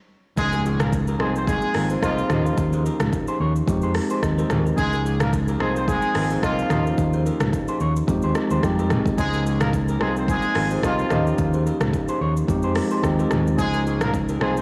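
Afrobeats in a sunny, joyful mood, with a lightly swung sixteenth-note feel, this clip is cut from a longer piece and opens after a brief silence, with a very quiet electronic impact sounding from 0.4 to 2.6 seconds. A bell-like tine electric piano sits up front, bright and clean, cycling through Db6/9, Ab6/9 over C, Eb9 and Fm9 chords. A fingered electric bass gives a dark, round, punchy low end. A deep house drum kit, electronic and layered with a deep kick, smooth hats, rim click, shaker and toms, sounds up front, and its snare carries soft clipping. A warm horn section plays a second line from a distance with light vibrato and tape echo. A slightly broken-up, picked electric guitar through a small old amp carries a riff with tape echo, all within a blown-out, overdriven recording with light reverb and studio ambience.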